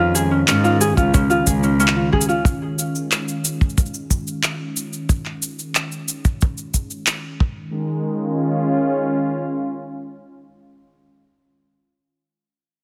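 This short folktronica excerpt opens in Db major at 91 BPM with a smooth, warbling analog pad holding sustained chords through lush chorus, joined at once by fingerpicked ukulele arpeggios ringing into digital delay and a bowed cello giving a reedy, gut-string bass line. Electronic shaker and handclaps, tape-tinged and up front, come in at 0.2 seconds, and a dry, muffled, tight kick with a rolled-off top lands at 1.0 seconds, giving a straight 4/4 pulse. The ukulele and cello fall away after only a couple of seconds, leaving the detuned, vintage pad and the percussion to carry the pastoral, delicate mood under a filter sweep on the pad that runs until 7.7 seconds. The harmony moves from Db to Eb7sus4 and Ebsus4 before settling back on Db as a second section begins, where the pad sounds on by itself, its long release hanging in light reverb and small-room ambience.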